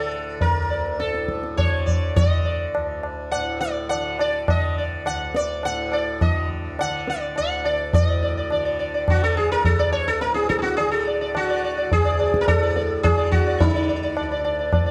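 A dark, warm recital-hall sound with a wet reverb frames this meditative, radiant extract of Hindustani classical music, cut from a longer piece. It moves in a straight 5/4 at 105 BPM and gradually speeds up throughout its 14.9 seconds. Up front, a bright, plectrum-plucked sitar carries the melody between Eb4 and F#5, its buzzing tone and sympathetic strings giving it a shimmering glow. Beneath it, a softly plucked tanpura holds a drone from D2 to D3, quieter than the other parts and adding its own resonant buzz. The low-tuned tabla enters at 0.4 seconds with a short ring, sounding close and dry against the spacious hall. At 7.9 seconds the music moves into a new section, with the gathering pace carrying it forward.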